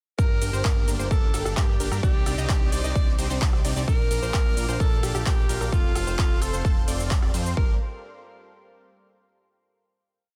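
Emotional and powerful, this short festival progressive house piece opens directly into a drop at 0.2 seconds, where a breathy, whispered alto saxophone with light vibrato and vintage sampler grit sings hook phrases through digital delay over pulsing, detuned supersaw chords, soon joined at 0.6 seconds by a lush background pad shimmering with chorus and phaser. A fat, saturated analog bass follows the chord rhythm as a punchy four-on-the-floor electronic kick sits up front, joined by a big-room kit of claps, metallic hats, rim clicks and shaker, while a wave-folded unison pluck plays arpeggios that double the chords in the background. Sidechain pumping breathes through the synth and bass layers until the piece settles onto a final chord at 7.6 seconds, wrapped in digital ambience and a dense, heavily limited modern master.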